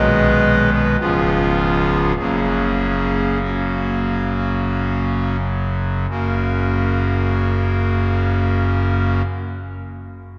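Majestic and reverent, this brief classical chorale-style fragment, cut from a longer piece, unfolds in a flexible, rubato triple metre that slows through its opening 6.1 seconds. A solo pipe organ speaks through a hollow clarinet reed stop with romantic voicing, placed up front and spanning from deep bass notes to the upper middle register, moving from G#m/B through C#7 to a resolving F# chord before the organ stops at 9.2 seconds. A dark production and a long, wet church reverb give the sound a cavernous glow.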